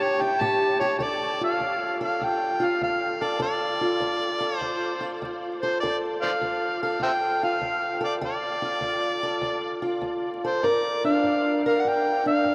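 An overdriven harmonica opens with a short jazz-inflected solo passage over an A5 chord, while a fingerpicked steel-string acoustic guitar plays from the very first moment. This is mournful, soulful acoustic country blues in D minor at 100 BPM in 4/4, with a 68% swing on the eighth notes. The amplified harmonica carries the melody up front with a gritty tone, light vibrato, tongue slaps and scooped notes. The guitar, equally up front, gives a boxy parlour-style accompaniment with a warm body, settling on D minor at 1.0 seconds and moving to G minor at 10.6 seconds. Both sit in a huge, wet reverb that suggests a vast, echoing space, with vinyl crackle underneath, and the recording is cut from a longer piece.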